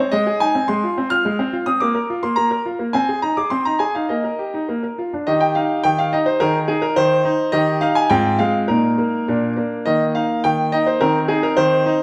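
A bright concert grand piano plays alone, up front and brilliant with deep bass and long sustain, through this graceful, cheerful excerpt of a classical-period sonatina in Eb major at 106 BPM in 2/4, its opening phrase giving way to a second section at 5.3 seconds as the open tone rings through a moderate recital hall reverb.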